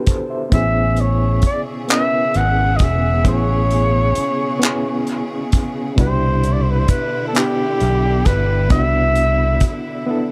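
Slow six-eight R&B in A major at 44 BPM, intimate and warm, where a gritty, overdriven reed electric piano with medium tremolo accompanies a vibrato-tinged flugelhorn melody soaked in dub echo, over a tight soul drum kit with handclaps, hi-hat and kick, a dark, round fingered electric bass, and lush bright strings holding sustained chords as the harmony moves from Cmaj9 to Amaj9 and back to Cmaj9 at 6.0 seconds, all in a small-room, echo-heavy mix cut from a longer piece.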